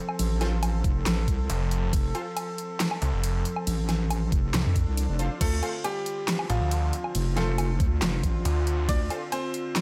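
A snarling, detuned saw bass growls up front beside a saturated square-wave wobble bass in this menacing half-time heavy wobble dubstep excerpt at 138 BPM, driven by an overdriven knocking kick and a dubstep kit with a huge snare, bright hats, handclaps, woodblock and cymbals, while a distant, reedy chamber string section holds sidechain-pumped, low-pass-filtered chords over F moving to Dm7, a punchy orchestra-hit-like synth stab echoes in the background, an electronic swell sounds at 4.8 seconds, and a brilliant grand piano carries the melody with digital delay from 5.4 seconds.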